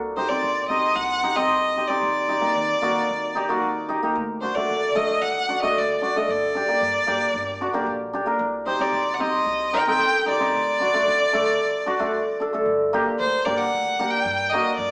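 Klezmer in a bittersweet, festive mood, this live one-room take opens with a woody pizzicato upright bass in the background, joined at 0.2 s by a focused, vibrato-laden bowed violin carrying the melody up front and a shimmering, ringing hammered dulcimer accompaniment, all set in a stone-room reverb with a small-speaker sound, pausing for a break at 11.6 s before a new section begins at 12.7 s in this fragment of a longer piece.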